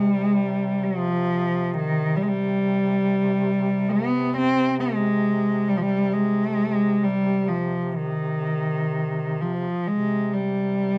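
A rich, smooth-topped bowed cello sings an up-front, vibrato-laden melody over a distant, roomy mellow duduk holding a low C drone with scooped notes, in a solemn, longing Caucasian folk lament in C harmonic minor that moves in a rubato 3/4 at around 61-68 BPM, closely recorded with detailed microphones and light reverb across this 11-second fragment of a longer piece.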